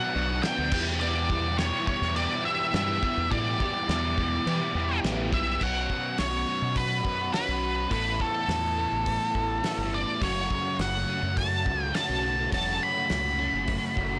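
This short cut from a longer indie rock piece has a blown-out, overdriven recording sound with light reverb, and its mood is jangly and carefree over a straight 4/4 feel. Up front, an octave-fuzz lead guitar carries the melody in a dark, distorted tone, ranging from A4 to B5. Beneath it, a bright, crunchy overdriven guitar with phaser plays a picked riff, while a second overdriven guitar, compressed and set in the background with ensemble chorus, plays its own riff. A growling fingered bass, direct and amped with overdrive and a punchy edge, enters at 0.2 seconds, and a cloth-damped acoustic drum kit joins at 0.4 seconds with a fat snare, tight kick, hi-hat and dark crash cymbal in a small room. A soft, pure FM synth bell adds a barely audible second line until 5.0 seconds, and the harmony moves from Bm and Em7 to Bsus2, Asus2 and F#m.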